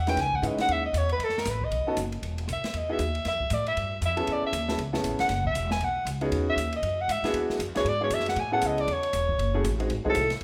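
A mellow, distant soprano saxophone takes the solo through this moody, smoky small-group swing and bop excerpt in E major, racing along at 234 BPM with a swung feel over an up-front, woody pizzicato upright bass, a natural, long-sustaining upright piano and an open drum kit with dark cymbals and a boomy kick. The harmony moves restlessly through colorful extended chords, and a breathy, whispered baritone saxophone slips in only at 10.1 seconds. The group sits in the moderate reverb of a recital hall, giving the sound a roomy, smoky glow.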